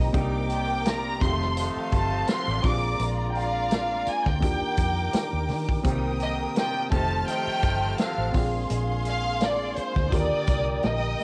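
Smooth and cinematic, this short cut from a longer lush 1970s-style soul piece moves at 84 BPM in 4/4 with a light sixteenth-note swing, cycling through Cm9, F7, Bb9 and Ebmaj7 twice. An expressive, up-front violin section carries the melody from 0.5 seconds, with vibrato and a soft attack, while a focused string section adds a second line above a worn, boxy baby grand piano with audible action noise and a mellow tonewheel organ turning on a slow rotary speaker in the background. A round, foam-muted electric bass and a punchy vintage drum kit with a rolled-off top anchor the groove, and a distant, tight horn section drops in stabs until 8.5 seconds, all captured as a cassette home recording with light reverb.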